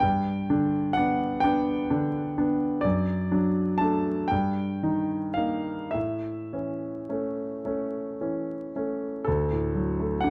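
A rubato six-eight sway carries this tender, serene romantic nocturne for solo piano, a brief cut from a longer piece in which a warm, vintage concert grand with deep bass, smooth tone and short sustain sits up front from D2 to A5, moving through G, D/F#, Eb/G and A before settling on D at 9.3 seconds, heard through close, detailed microphones in a moderate recital hall with a touch of vinyl crackle.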